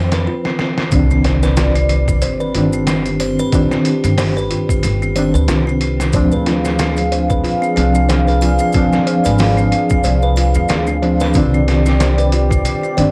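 Trip hop in C minor at 92 BPM with a swung 16th feel, this cinematic, smoky excerpt sets a mellow, reedy electric piano with fast and harmonic tremolo and tape echo over a dark, detuned analog pad with chorus, a delicate tinkling music box with tape echo, an up-front woody pizzicato upright bass with tube saturation, a gritty, compressed, pitched-down sampler-style drum kit with a thumpy kick whose fill at 0.4 seconds leads into a very quiet electronic impact at 1.0 seconds, and background maracas and triangle, all moving between Dm7b5 and Cmadd9 beneath light reverb and the warbling pitch drift of worn cassette tape.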